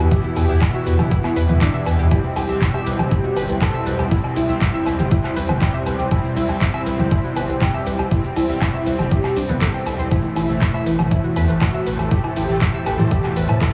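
A punchy analog kick sits up front in this dramatic, melancholic melodic techno excerpt, joined by a drum machine of handclaps, hi-hat, shaker, toms and woodblock, both with a small-room character, over a round, deep bass with tube saturation. A thick, detuned unison lead carries the melody with vibrato and tape echo, while nasal synth brass stabs, a warbling, lo-fi pluck playing arpeggios, and an airy, evolving pad sit further back, all pumping against the kick as the harmony moves from Em to C and then Am at 10.1 seconds. A very quiet, swarming drone hums beneath, and a huge ambient reverb soaks the whole mix in a dreamy haze.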